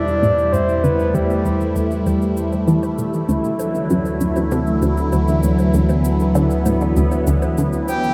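The phased analog pad stands out most, holding swirling, detuned sustained chords up front through the whole 8.1-second excerpt, its phaser and chorus giving it a slowly evolving motion. This is cosmic, hypnotic, sequencer-driven space music at 98 BPM in a straight 4/4, moving from E minor to Dadd9 at 3.3 seconds. A breathy, flute-like synth lead with soft vibrato and tape echo sings a short melody at the opening, stops at 2.1 seconds, and returns briefly near the end. Underneath, a round, deep analog bass with a ring-modulated edge sustains low notes, while a juicy, squelchy blip pluck with phaser and tape echo repeats a resonant riff in the background. Electronic cabasa and bongos, tape-toned and echoing, fade in beneath a filter sweep on the arpeggiated synth, all set in a vast cathedral reverb that lingers for seconds.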